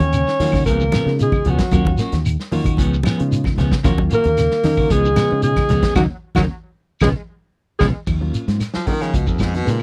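A hypnotic, driving afrobeat groove, cut from a longer piece, opens with an up-front alto saxophone melody over a trombone second line with slapback echo, a reedy, worn electric piano with overdrive and tremolo in the background, two clean semi-hollow guitars playing arpeggios and stabs, a round, punchy fingered bass, a vintage kit with dark cymbals, soft low-tuned congas, grainy shekere and woody claves, captured dry and close in a 1970s-style studio, before a drum fill and band accent at 6.0 seconds lead to a bright baritone saxophone solo entering at 8.7 seconds.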